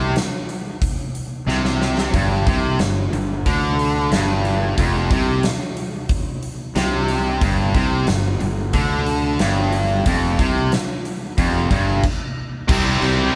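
Anthemic and powerful, this hard rock excerpt moves at a straight 91 BPM in 4/4, cut from a longer piece and sounding like a band playing live together in a stone room with moderate reverb. Two bright, overdriven electric guitars carry the riff from the opening, picked over a G5 chord, while a fuzzed, growly fingered bass, direct and amped, grinds underneath in the low register. A huge arena drum kit enters at 0.2 seconds, up front with bright cymbals, a fat snare and a boomy kick, and throws in an early fill around 1.5 seconds. The band hits a stop at 12.0 seconds, and at 12.7 seconds a double-tracked, high-gain guitar sits in the background as the harmony shifts to C. The overall sound is heavy and physical, with the kit's hall ambience and the bass's fuzz giving the riff its weight.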